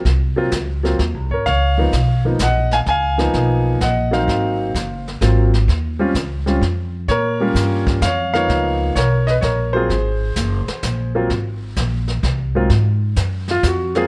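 A clear concert grand piano opens this playful jazz piano trio excerpt with a rootless Abadd9 voicing, carrying the melody in Ab mixolydian with deep low notes and a touch of plate reverb. Woody pizzicato upright bass and a small-room brush kit, with brushed snare, hi-hat and a boomy kick, join almost at once, swinging a 3/4 waltz at 128 BPM through rich Db13, Ab13 and Eb9 changes. Close, detailed miking keeps piano and bass up front while the drums sit lower, and at 12.7 seconds the piano steps forward for a short solo over an Ab7(no3) chord.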